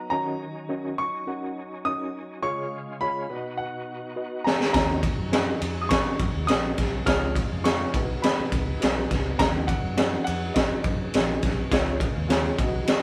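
A live-in-one-room sound with light reverb gives this driving, urgent slice of uptempo 1960s-style soul a close, immediate feel. A dark, mellow grand piano carries the melody high in its range with short, clipped notes, while a reedy electric piano, overdriven through a combo amp and shimmering with fast tremolo, plays accompaniment in the background. Alongside them a full, thick tonewheel organ holds sustained chords, its gritty overdrive, key click and percussive attack turning slowly through a rotary speaker with chorus vibrato. A drum fill brings in the raw garage kit at 4.5 seconds, saturated and up front, with a punchy kick, a high-tuned snare and ride cymbal, and a rolled-off top. A round, foam-muted electric bass sits low under the Ebm7, Db and B changes. At 12.9 seconds a very quiet, clean hollow-body jazz guitar sounds a single riff note just as the excerpt ends.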